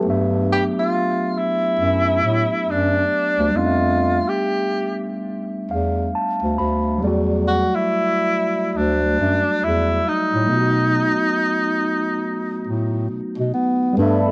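A mellow, clean tine electric piano opens this late-night, smooth R&B fragment at 69 BPM in a swung 4/4, joined at once by a dark, breathy bass clarinet with scooped notes on the bass line and a distant, roomy tenor saxophone carrying a jazz-style melody with vibrato, while the piano adds a fill at 5.3 s over chords moving from Gmaj9 through Fmaj9#11 and Em11 to B7, before a hollow, flute-like soft pad with chorus enters at 14.0 s, the piano, saxophone and pad carrying cassette tape character in a home recording with light reverb.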